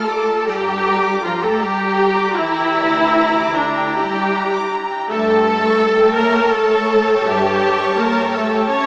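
Classical slow romantic movement for string orchestra in rubato 12/8 at 48-56 BPM, solemn and melancholic, where a rich, lush viola section sits up front beneath a smooth, background violin melody, a second violin line, a soft-attack cello bass and a woody double bass entering at 0.5 seconds, all bowed with vibrato over Gm moving to A7/G, bathed in vast cathedral reverb with a small-speaker sound in this excerpt cut from a longer piece.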